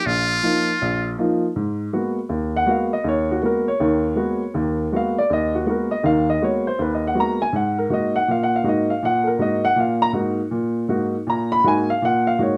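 Jazz swung at 161 BPM in G# dorian, this searching, spiritual excerpt opens with a buzzy, punchy metal-muted trumpet stating a brief solo line with light vibrato that falls silent at 1.2 s, while an open, long-sustaining baby grand piano, up front in the mix, carries the accompaniment through G#m9 and D#m/G# harmonies until 12.6 s, all set in a club reverb.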